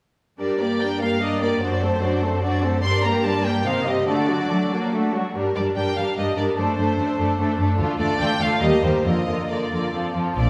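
A section of second violins, violas and cellos begins together at 0.4 s in G minor, and at 0.6 s a studio violin section takes up the melody high above them. This is a quick, restless classical-period movement for string orchestra at 146 BPM in 3/4, played with rubato that gives it a stormy, unsettled feel. The melody violins sound rich and intense with light vibrato and a smooth top, while the second violins are lush and expressive with a soft attack. The violas give a clear, focused accompaniment, and the cellos carry an even bass line placed up front. The harmony moves from G minor through D7 over F sharp, C minor and D, then turns toward D minor, E flat, B flat over F and finally F, until at 10.4 s a double bass section, up front, sounds a single Bb1 as this fragment of a longer work breaks off. Wet recital hall reverb places the whole ensemble further back in the room.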